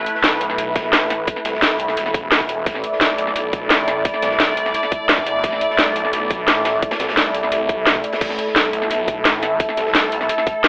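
Dark technical drum and bass at 173 BPM in A minor, futuristic and mechanical, cut from a longer piece and heard through a telephone-like filter with a moderate digital room reverb. An up-front, warbling sawtooth pad sustains lush chorused chords with sidechain pumping over a growling, detuned saw bass with distortion and overdrive, while a tight electronic kick enters at 0.8 seconds. An up-front drum and bass kit with a cracking snare, metallic hats and crash cymbal drives the groove, with a very quiet, gritty breakbeat kit of snare and hi-hat tucked beneath it.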